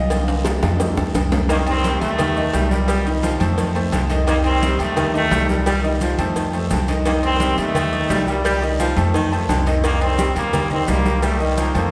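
A tight, brilliant trombone section carries the festive, joyful salsa melody from 1.5 seconds, joined by a clear, punchy baritone saxophone second line in the background, after a drum fill opens this excerpt over a worn, bright concert grand piano, a woody, thumpy upright bass up front, thick-skinned congas, tight cowbell and bongos, ringing timbales and agogo bells, a raspy guiro and grainy maracas, all cycling between Cm7 and F7 inside a wet church reverb.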